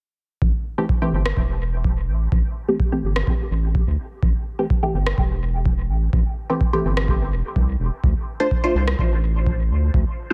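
A detuned, bright chord stab with a filter pluck runs through this cavernous, hypnotic dub techno excerpt at 126 BPM in A minor. The stab is coloured by phaser, vintage 12-bit sampler grit, dub echo, sidechain pumping and a filter sweep across the whole passage, moving from Am7 to D7(no3) at 8.0 seconds. Beneath it, a dark, wave-folded round analog bass pumps against a deep, up-front electronic kick, while an electronic rim click with its own dub echo enters at 1.3 seconds, and both drums carry the air of a large room within a digital ambience.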